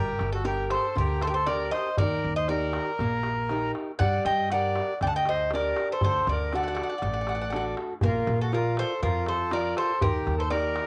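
Driving and intense, this Greek folk passage from a bouzouki band moves at 119 BPM in a straight 4/4, cycling through Gm, Eb, Gm, D, Bb and back to Eb. Up front, the Greek bouzouki carries the melody with a metallic, picked tone from its double and partly octave-doubled strings, colored by cassette tape and plate reverb. A reedy accordion sits mid-forward on a second line, while a boxy parlour-style steel-string guitar, fingerpicked with audible finger squeak, fills in the accompaniment. Beneath them, a woody, thumpy pizzicato upright bass with steel strings and tube saturation anchors the low end. A deep, large clay-shell darbuka with a natural skin joins at 0.2 seconds, played with soft hands and set in the background with a live-room feel. The whole excerpt has the moderate booth ambience of a home cassette recording.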